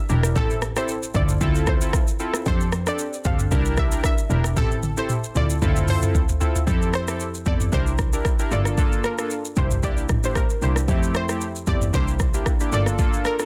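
An analog pluck opens this joyful, sunny afrobeats excerpt in F major at 114 BPM, its bright, detuned sawtooth tone carrying the melody through chorus and delay over round, airy analog keys that warble with a vintage character. A bowed double bass with focused, boxy vibrato holds the low end, while an up-front electronic afro-pop kit plays a swung groove of deep kick, smooth hats, rim click, shaker and toms with a soft-clipped snare, and a drum fill from 4.6 to 6.7 seconds leads into the second section. The chords move through Am7, Dm9 and C7 before settling into Fmaj7, C7 and Gm7, framed by digital ambience and a dense, heavily limited modern master.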